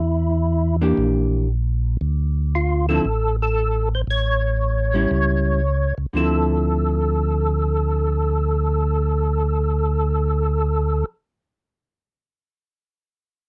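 A dry, close recording in a 1970s studio style, touched with light reverb, frames this smoky, bluesy jazz excerpt in D minor, swinging at 116 BPM in 4/4. A fat, percussive tonewheel organ carries the melody with its key click up front, turning through a slow rotary speaker and chorus vibrato. A second tonewheel organ, round and dark, holds the bass through its own slow rotary speaker, while a picked, clean hollow-body electric jazz guitar joins at 0.8 seconds to accompany over chords moving from Em7b5 through Dm and A7 to Dm9.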